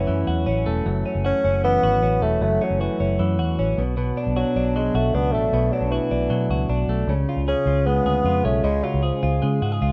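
A rough home demo mix with light reverb and a small room ambience frames this brief fragment of jangly indie pop in F# minor, moving at 154 BPM in a straight 4/4. A bright, twangy twelve-string electric guitar sits up front with clean, compressed picked arpeggios, while a vintage fingered electric bass, muted with foam, supplies a dark, round low end that is also close in the mix. Over them a mellow bassoon carries the melody in a classical style, its light vibrato and punchy attack set back at a distance in a roomy space, and it stops at 9.4 seconds, just before the other two parts finish at 9.9 seconds. The harmony moves from F#m7 to Bm7 at 3.8 seconds and then to C#, giving the piece a wistful yet restless mood.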